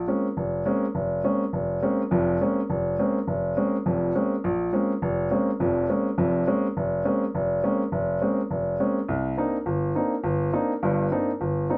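Jazz for solo baby grand piano, this excerpt from a longer piece carries an intense, hypnotic mood over a brisk swing feel in 4/4. The piano sits up front with a warm tone and long sustain, its notes hanging in the air of a moderate booth ambience. Its range stays low to middle, reaching from deep bass notes up into the middle register. The harmony rests on a Bbm9 chord before moving to Cm9 at 9.1 seconds. A shift into a new section at 4.4 seconds settles the music into a dorian colour that holds to the close at 11.8 seconds.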